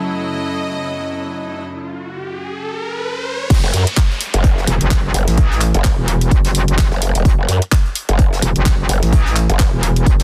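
A dark, detuned analog pad plays an F# minor chord under a filter sweep, joined at the start by a biting, bowed string section that stops at 1.6 s, leaving a break while an electronic riser and downlifter build. At 3.5 s this bouncy, gritty bass house track drops at 128 BPM in F# dorian with a swung 16th feel. A punchy, up-front electronic kick, a house kit of crash, handclaps and hi-hat, and a very quiet brushed acoustic kit with hi-hat and snare drive the drop, while a metallic FM wobble bass and a growling, formant-filtered bass, both overdriven and pumped by sidechain, dominate a dense, heavily limited mix with little reverb.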